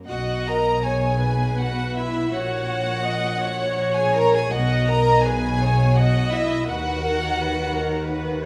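A close, intimate recital-hall sound with moderate reverb frames this serene, slow romantic movement for string orchestra in B major at 82 BPM in a rubato 3/4, where an up-front violin section carries the melody with vibrato and soft sul tasto bowing over a second violin line, a warm viola accompaniment, a dark cello section and a pure, floating double bass section, moving through B, F#/A#, B and D#m in a short passage cut from a longer piece.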